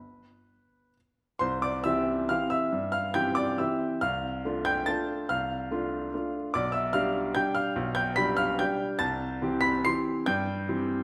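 A warm baby grand piano plays alone, up front and natural-sounding, in this graceful, elegant classical waltz in C major, flowing in 3/4 with a rubato feel between 127 and 152 BPM. After a brief unharmonized opening, the harmony settles on C at 1.4 seconds and moves through Dm7/C and G7/B before returning to C at 9.0 seconds, with the piano ranging from deep bass to bright upper register. A wet recital-hall reverb surrounds this short excerpt from a longer piece.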